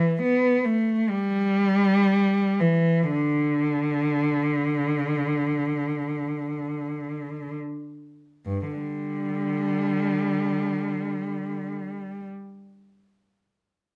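Classical and lyrical, this serene excerpt of a longer piece for unaccompanied bowed cello unfolds in free time in G major, tuned to A4 = 444 Hz, with the rich solo cello sitting up front between G2 and B3, its soft attack, vibrato and expressive portamento easing through a slowing opening passage before a new section arrives at 8.4 seconds and the cello falls silent at 12.3 seconds, all wrapped in a dark production and moderate large-studio reverb.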